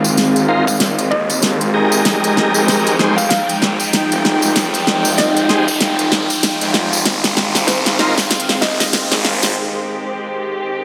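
This playful, gritty glitch hop excerpt in F minor at 96 BPM opens on dark, con sordino strings and a nostalgic, warbling tape-like pad, both pumping against the sidechain. Beneath them sit a swirling, thick phased saw bass, a jingly tambourine and a riser with reverse cymbal, set in a lush hall reverb as the passage builds. Up-front pop drums with a fat snare and crisp hats arrive at 0.2 s, and from 0.5 s a key-clicking tonewheel organ adds chorused, tape-echoed stabs while a woody wave-folded pluck carries a mellow melody, joined at 0.7 s by a very quiet knocking electronic kick. A drum fill and filter sweep drive the build until a short break at 9.6 s leaves the veiled strings and the riser alone.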